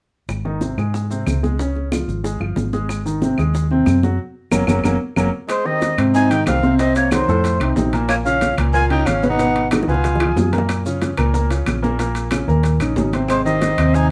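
Moderate studio reverb gives this lively, danceable Afro-Cuban jazz a tidy room sound, with the piano and bass placed up front. At 184 BPM in straight 4/4 and Ab major, a dark, round hollow-body fingered electric bass and a warm baby grand piano with short sustain carry the groove. Behind them sit high-tuned, damped congas, low-tuned bongos played with soft hands and woody vintage claves, while grainy maracas sound close and dry. At 5.5 seconds a breathy, bright jazz flute takes the melody with vibrato and a chiffy attack, while a growling tenor saxophone, raspy and full of scooped notes, carries a second line beneath it, and ringing metal-shell timbales join the percussion. Both horns drop out at 10.5 seconds and return at 13.3 seconds, as the harmony moves through seventh chords such as Abmaj7, F7 and Db7. A band accent and drum fills mark the turns in this clip cut from a longer piece.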